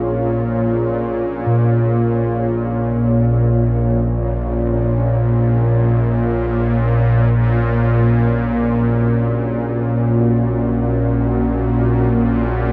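Ominous and vast, this dark ambient drone drifts in free time, a short passage cut from a longer piece that moves from B-flat minor to a G-flat chord over B-flat at 5.3 seconds. Up front, a tense, string-like bowed drone sits low beneath a deep, moody pad of detuned sawtooth and sine layers with a sub octave, its sustained chords treated with chorus and shimmer reverb, while a very quiet bronze singing bowl rings out metallic, slow-beating arpeggios until 7.3 seconds. A huge reverb and worn, warbling cassette tape with pitch drift give the whole recording an aged haze.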